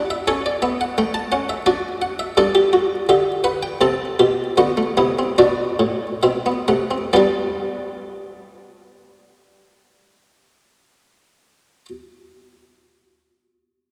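A buff-stop harpsichord carries this baroque-style four-part fugue alone from 0.0 to 11.9 seconds, its muted, lute-like pluck sitting up front with a dry, airy edge in the Flemish style. The mood is joyful and lively, in G major with a 3/4 metre and a straight feel, tuned to A4 = 441 Hz, and the tempo moves between 63 and 87 BPM. The voices span G2 to A5, and the harmony passes through A, D and G before reaching C and a D7 that resolves back to G. The pace slows from 1.3 to 7.1 seconds, where the opening section gives way to a second one that settles on G. The recording sits in a church or concert hall, wrapped in a long, wet church reverb, and it is cut from a longer piece.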